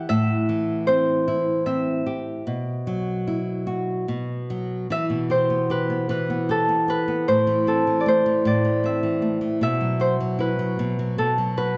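Dreamy and gentle, this short cut from a longer children's lullaby moves in an unhurried three-time sway with a loose, rubato feel. A Celtic harp carries the melody in a modest upper range, its fingerpicked notes ringing out up front. Beneath it, a small-sounding nylon-string guitar with fresh strings fingerpicks the accompaniment, and a finger squeak adds an intimate touch. Both instruments play throughout, and the harmony drifts through suspended and open chords before settling into a new phrase at 4.9 s. The dark production sits in a moderate recital-hall reverb that lends the soft, bedtime mood a gentle glow.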